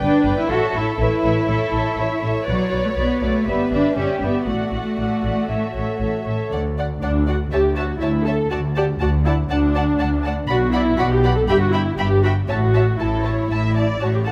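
Up front in the mix, a muted viola section carries the inner accompaniment with a soft attack and a smooth, veiled top, giving this quick classical-period movement for string orchestra its shaded colour. Above it, muted violins bowed with vibrato sing the melody high in their range while a second, lusher violin section fills in a supporting line below. The cello section, sounding more distant with light vibrato, and a dark double bass section share the bass, all five parts playing con sordino from start to finish. At 121 BPM in a straight 4/4 and in D major, the mood is cheerful and spirited, moving from an opening passage that leans toward A and B minor into a second section from 6.5 seconds that settles back on D before turning toward A again. A moderate recital hall reverb surrounds the ensemble, and the 14.3-second passage is cut from a longer piece.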